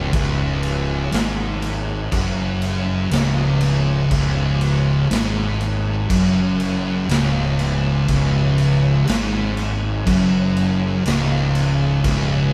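This recording has the raw, lightly reverberant sound of a band playing live together in one room, and it is cut from a longer piece. It is stoner and doom metal at a slow 60 BPM in straight 4/4, heavy and brooding, built on a C#5 power chord throughout. Two thick fuzz guitars pick the riff low between C#2 and G#2, one dark and distorted up front, the other warmer and sitting in the background. Beneath them a fingered electric bass, overdriven and round, adds weight from C#1 to G#1. The raw garage drum kit enters at 0.1 seconds with punchy kick, medium-tuned snare and crash cymbal, its gritty, saturated tone pumping in a bright stone room with a rolled-off top.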